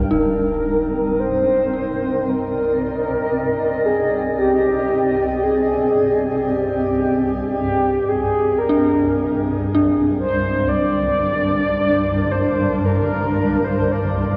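A slow, straight 4/4 pulse at 57 BPM carries this ominous, desolate ambient piece in C minor, moving from Cm to Gm at 8.6 seconds. A swarming, nasal, detuned drone fades in low beneath a blurred granular cloud pad with shimmer reverb, while an eerie, inharmonic FM bell plays arpeggios through chorus, delay and shimmer. Up front, a round, horn-like sawtooth lead sings the melody with vibrato, a filter sweep, lush chorus, delay and vintage 12-bit grit, all set in a cavernous cathedral reverb with warbling old-cassette pitch drift, cut from a longer piece.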